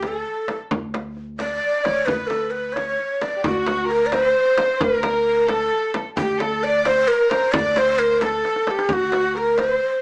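This short excerpt from a longer Persian modal ensemble piece has a small-speaker sound bathed in a wet studio reverb. The mood is stately and warm, moving at 88 BPM in dotted quarters in a straight 6/8, and from 3.4 s the music settles into D dastgah homayun. An end-blown reed-cane ney carries the melody up front, breathy and close-miked, its tongued notes shaded with vibrato and an unsteady, human waver. Alongside it a chamber violin section plays a second line in the same register, bowed sul tasto with soft attacks and light vibrato for an intimate blend. A woody, thumpy pizzicato upright bass with steel strings sits on a low D. A deep, large frame drum played with hard hands and a tight tombak in the background keep a dry pulse, with a drum fill at 8.4 s.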